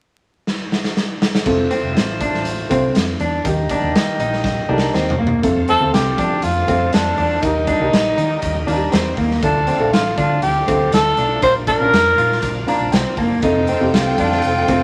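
Warm and uplifting, this uptempo 1960s-style soul excerpt moves in a straight 4/4 under a layer of vinyl crackle and moderate studio reverb. A raw garage drum kit opens with a fill at 0.5 seconds, its punchy kick, medium-tuned snare, toms, hi-hat and crash sounding saturated and gritty in a bright, pumping stone room, with a rolled-off top and an up-front placement. At 1.5 seconds a woody, slightly detuned upright piano, a dark, foam-muted fingered electric bass and a mellow, distant horn section come in, joined by an electric guitar riff through a small old amp, slightly broken-up and lo-fi, with spring reverb. The horns drop out as a bright, shouting tonewheel organ settles into sustained chords in the background, its slow rotary speaker, chorus vibrato and key click audible, and a breathy tenor saxophone takes the melody up front with scooped notes and a whispered, intimate jazz style. 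The piano adds fills along the way, and at 13.4 seconds a lush, close symphonic string section enters with a bowed, expressive second line as the chords return home to F.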